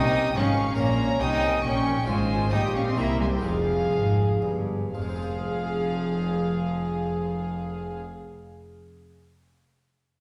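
A close, gut-strung solo cello carries the melody in this dramatic, driving baroque-style concerto passage in triple time, joined by period-style violin sections playing a high melody and a second line with light vibrato. Dark, nasal violas fill the middle, while an airy, round harpsichord sits in the background and a cello section and a double bass section supply the bass. The music slows from 1.4 to 5.0 seconds before the next section begins, all set back in a reverberant concert hall as a short cut from a longer movement.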